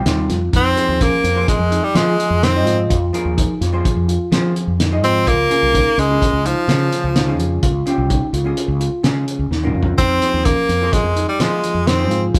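A dark, hollow-body jazz guitar and a round fretless bass open this driving, tense progressive instrumental in 5/4 at 127 BPM in F minor, soon joined by a worn, slightly out-of-tune electric piano arpeggiating through light overdrive and a muffled, cloth-damped drum kit with a fat snare and tight kick, before a forceful, edgy tenor saxophone enters up front at 0.6 seconds with scooped notes and vibrato, the band playing live together in a large studio room with moderate reverb and a drum fill at 9.5 seconds in this piece cut from a longer performance.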